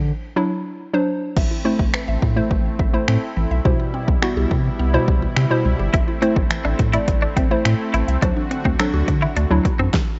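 Energetic yet bittersweet, this dance-pop excerpt opens with a brief hollow square pluck and saturated sub bass before a silent gap, then at 1.4 seconds a punchy, overdriven deep house drum kit, a smooth supersaw pad and a woody, phased mallet-like synth pluck trailing delay join in, the synths and bass pumping against the beat, until a twangy twelve-string electric guitar riff enters at 5.9 seconds, all wrapped in light reverb and a worn, warbling cassette-tape haze.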